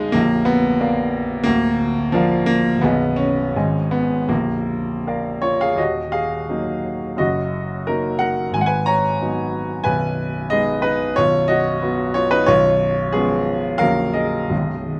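A baby grand piano opens alone, its tone open and up front, in a romantic character piece for solo piano. The mood is warm and hopeful, and the playing moves in a flexible rubato over a duple metre. The piece states its opening theme, then restates it from 5.8 s, with the harmony drifting through shadowed minor chords before brightening at 11.2 s. The piano's reach runs from deep bass notes up into its upper middle register, and close, detailed microphones catch it with light reverb. This fragment is cut from a longer piece.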